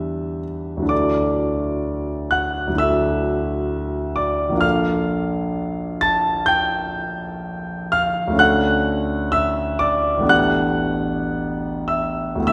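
The rhythm moves in a flexible rubato across a slow 4/4, drifting between 51 and 66 BPM, in this cut from a longer impressionist classical piece for solo piano. A concert grand carries the whole passage alone, spanning from A1 up to A6, with a clear, polished tone, deep bass and long sustain. The instrument feels intimate and present, close enough that the noise of its action is audible. A wet concert hall reverb with a 1.8-second decay surrounds it, so the listener also seems to sit further back in the room, lending the sound a luminous, hazy glow. The harmony glides from Em7 through Dadd9, then shifts at 4.6 seconds to Bbmaj7 before settling on Dmaj7 and an A9sus4 near the close.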